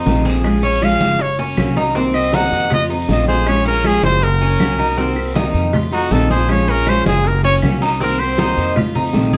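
Picked steel-string acoustic guitar, metallic double-strung Cuban tres arpeggios and a growly, woody pizzicato upright bass open this sultry Cuban son and guajira piece in Bb minor at 159 BPM. Low-tuned congas, raspy distant guiro, very quiet tight bongos and woody claves join at 0.1 and 0.4 seconds. A bright, up-front trumpet enters at 0.6 seconds for a pop-style solo with light vibrato over a cycling Bbm7, Gb, Cm7b5, F7 progression, set in a moderate large-studio reverb.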